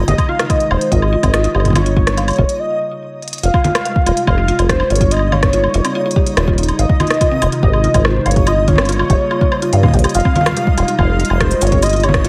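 A straight 4/4 groove drives this glitchy, eerie IDM clip, cut from a longer piece, with a soft, tape-tinged electronic kick thudding beneath an organic-sounding electronic kit of congas, crisp hi-hats, rim clicks, shaker and woodblock set in a large room. A rubbery, resonant acid bass sits up front, its dark sawtooth notes striking fast and decaying low in the register. In the background, a warbling, lo-fi pad holds nostalgic sustained chords with chorus and its own reverb, while a woody, round FM pluck spins mellow arpeggios through lush chorus and delay. A velvety, smooth lead carries the melody high up, colored by vibrato, chorus, digital delay and a touch of vintage 12-bit sampler grit, and a very quiet reversed texture swells dreamily beneath it with detuned, granular shimmer. The harmony cycles through Ab, Gm7b5 and Fmadd9 with an Eb7 passing through, and a brief break from 2.6 to 3.4 seconds, capped by a drum fill at 3.2 seconds, opens into the second section.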